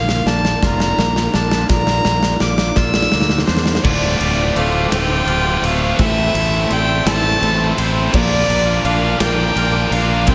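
Post-rock in a slow 6/8 at 56 BPM, this brooding, cinematic fragment is cut from a longer piece and moves through Bb, Dm7, Am and back to Bb. A rich, reedy violin with a gut-string, period-style tone carries the melody up close, its single bowed line trailed by tape echo. Beneath it, a dark, woody string section holds lush, very quiet chords, while a twangy clean electric guitar and a ringing vibraphone struck with hard mallets weave arpeggios, the vibraphone sitting in a boxy small room with its own tape echo. A growly, fuzz-driven fingered bass sits up front alongside a huge, airy arena drum kit with a punchy kick and bright cymbals, which opens with a build-up and drum fill over the first 3.8 seconds. At 3.8 seconds two bright guitars enter in the background, one biting and overdriven, the other tight and distorted, both playing a picked riff. The whole mix is set in light studio reverb.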